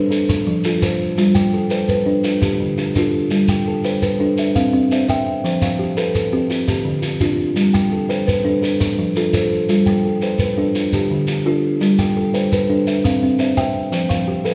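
Warm and rippling, this southern African traditional piece turns an mbira-style interlocking cycle in 12/8 at 113 BPM, counted in dotted quarters, with a straight feel in G mixolydian. Two kalimbas spin arpeggios between D3 and G5 throughout: one is fingertip-plucked, woody and mellow, sitting close and up front with a soft, ringing hollow-box tone, while the other is thumbnail-plucked, bright and buzzing, and a little quieter. A grainy shekere joins at 0.1 s and sounds distant, as if heard across a large room. The harmony moves through F, G, Dm, G and C, returning to these chords in shifting order across the passage. The production is dark and warm, set in a wet recital hall reverb, and this short stretch is cut from a longer performance.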